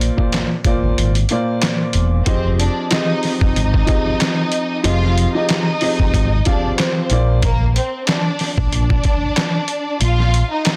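Dense, heavily limited and gritty, this dark boom-bap hip-hop excerpt sets a vintage, cassette-tinged grand piano over a round, amped fingered electric bass and a pitched-down, sampler-style drum kit of thumpy kick, snare, hi-hat and handclaps, with the kick dropping out from 1.0 to 2.3 seconds before a lush, vibrato-rich violin section enters at 2.3 seconds carrying the melody through a filtered digital delay.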